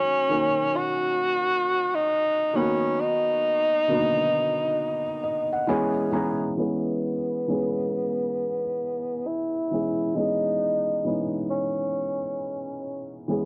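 Swung sixteenths give this slow hip hop fragment a lazy, nostalgic haze, as a felt-muted upright piano lays down soft, thick-felted chords beneath a breathy tenor saxophone singing a subtone melody with vibrato and scooped notes. The piano adds a fill from 4.8 to 6.6 seconds, and from 6.6 seconds a filter sweep colours the second half while the whispered, jazz-style, vintage-toned sax carries on until 13.2 seconds. Both instruments sit up front and intimate, dulled by a low-pass filter and cassette tape, in a moderate spring reverb that fills out the home recording.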